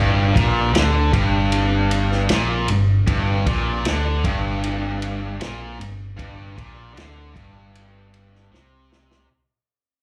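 Raunchy and gritty, this short cut from a longer blues rock power trio and southern rock piece is heard live through a club PA with light reverb, fading out across its full 9.3 seconds. A distorted, double-tracked guitar riff with slapback echo sits up front beside a growly, punchy picked bass, while a vintage kit with dark cymbals and a tight kick joins at 0.4 seconds on kick, snare and ride and closes with a fill from 8.5 seconds. Underneath, a very quiet overdriven tonewheel organ holds thick sustained chords through a slow rotary speaker with chorus vibrato.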